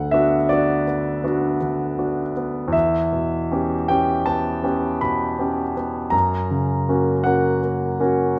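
A romantic classical nocturne for solo piano, this short excerpt cut from a longer piece carries a wistful, melancholic mood at a slow 53 beats per minute in 9/8, played with free rubato in B minor. A warm concert grand sits up front and intimate, its tone polished and present, with deep bass and long sustain, and the sound of its action audible beneath the notes. The playing spans from D2 up to B5 across the 8.4 seconds. The harmony moves from B minor over D to C-sharp half-diminished over E at 2.7 seconds, then arrives on F-sharp at 6.1 seconds. A stone room's reverb, with about a second of decay, wraps the piano in a wet, lingering ambience.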